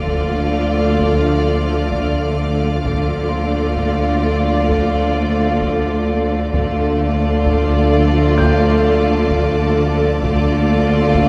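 A straight 4/4 pulse from a very quiet taiko ensemble, entering at 0.1 s, underpins this mysterious, tense suspense film cue, cut from a longer piece, as a huge, bright impact sounds until 2.8 s over a thick, saturated sub bass drone, distant cellos and focused double basses in the background. A clear, lush studio violin section carries the melody above an expressive chamber violin second line with portamento, an intense but very quiet viola accompaniment, mellow French horns and very quiet trombones with light vibrato holding sustained chords. High, distant symphonic violins and a soft, felt-muted upright piano with audible action noise add faint texture, all set back in a wet scoring stage reverb.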